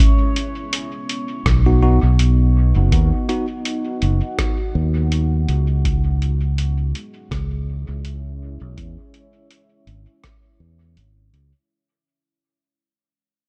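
Meditative and hazy, this ambient dub excerpt in C# minor moves at 82 BPM with a light sixteenth-note swing, fading out across its full length as a moody, detuned pad with a sub octave holds sustained chords from B to C#m, wrapped in chorus and its own reverb. A muffled, sampler-style kit ticks out hi-hat and rim click through dub echo, while a round, up-front fingered electric bass and a tape-warm electronic kick enter at 1.5 seconds. A bright, bell-like tine electric piano drops echoing stabs until 3.5 seconds, all set in an echo-heavy digital ambience.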